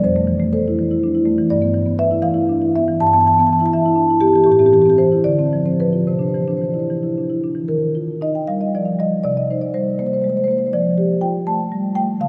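Contemporary classical for solo marimba, this flowing, warm passage cut from a longer work moves in a rubato 6/8 at around 71-84 BPM, its woody, round, mellow soft-mallet tone sitting up front in a long cathedral reverb as seventh and added-note chords in C major shift to Eb major at 7.7 s.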